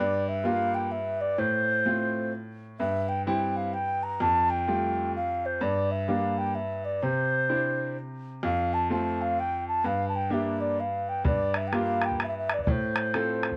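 Celtic folk waltz in G dorian at 128 BPM with a swung 3/4 lilt, this wild, spirited excerpt sets a mellow, hollow wooden baroque flute with vibrato and tongued notes on the melody over clear, boxy grand piano chords moving from Gm7 through F/A and Cadd9, until an open, boomy, vintage-toned bodhran joins at 11.3 seconds, all captured close and detailed in light reverb.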